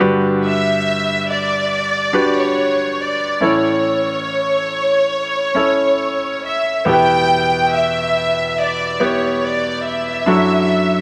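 Moving at a straight, unhurried 70 BPM in 4/4, this emotional, heartfelt pop excerpt sets a bright concert grand piano with deep bass as accompaniment under a smooth, vibrato-rich violin section that carries the melody from 0.4 seconds, both up front in a lush hall reverb over chords moving from Gmaj7 and A to Em and Dadd9/F#.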